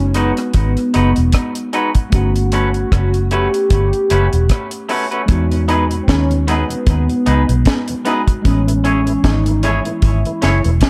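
Tender and romantic, this short lovers rock reggae passage sits at an unhurried 76 BPM in 4/4 with a gentle swing on the sixteenths, in E major, and is cut from a longer piece. A velvety, detuned synth lead carries the melody with a smooth, sustained tone, vibrato, chorus and tape echo, while a worn, slightly out-of-tune tine electric piano sits in the background with tape echo of its own. Up front, a round, foam-muted fingered bass anchors the low end beside a dark, dry drum kit with a tight kick, high-tuned snare, rim clicks, hi-hat and a rolled-off top, its sound trailed by tape echo. An electric guitar through a small old amp adds twangy, slightly broken-up, lo-fi stabs, and from 5.5 seconds a very quiet, lightly overdriven tonewheel organ with key click and chorus vibrato thickens the harmony. The chords move from G#m7 through Gmaj9#11 and Emaj7 to Amaj7, all wrapped in a light studio reverb.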